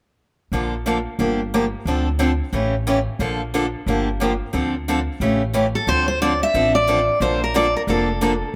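A bright, up-front picked steel-string acoustic guitar melody enters at 5.8 s over a second picked acoustic guitar comping on fresh, squeaky strings through Bbmaj7, Gm7, Dm7 and A7, while a woody, thumpy pizzicato upright bass anchors this fiery, swinging gypsy-jazz excerpt, the mix heard from further back in the room through a moderate spring reverb.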